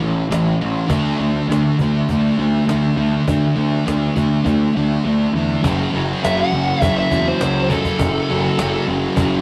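A bright, double-tracked fuzz guitar riff opens this raw, rowdy garage rock excerpt at 101 BPM, up front beside a growly, overdriven picked bass and a snappy, dry cajon, moving from A5 to D5 in a rough rehearsal-room sound with stone-room reverb and lossy artefacts. The cajon's kick and snare drop out from 5.0 to 5.6 s, after which the music shifts to F#m, and at 6.2 s a compressed, warm fuzz lead guitar adds a short high melody.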